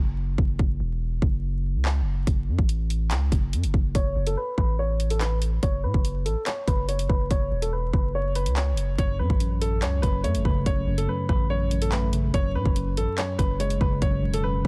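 A dense, heavily limited modern master dusted with vinyl crackle and digital ambience carries this dark, menacing half-time drill piece, where a deep, sine-toned 808-style bass with a fast attack and long decaying tail sits up front, a produced electronic kit of hard-clipped kick, handclaps and warm hi-hats joins at 0.4 seconds, a woody, vintage upright piano with short sustain and a low-pass filter enters at 4.0 seconds, and a worn, slightly out-of-tune tine electric piano, lightly overdriven, filtered and heard as if through built-in speakers, arrives at 9.0 seconds.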